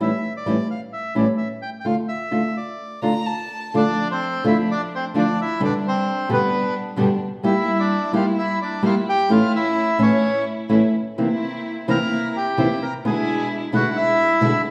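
A reedy, vintage bandoneon carries the melody up front over a dark, woody, fingerpicked nylon-string guitar from the opening moment, in a passionate, melancholic D minor tango at 129 BPM with a rubato feel. A single bowed violin adds a brief, expressive second line with vibrato and portamento at 3.0 seconds. After the harmony opens on A7 and Dm, an intimate chamber string section plays soft sul tasto stabs from 3.7 seconds as the chords move through G, Edim/G, A, C7 and E7/B. The band plays live in one room, bathed in a large studio reverb, in this passage cut from a longer piece.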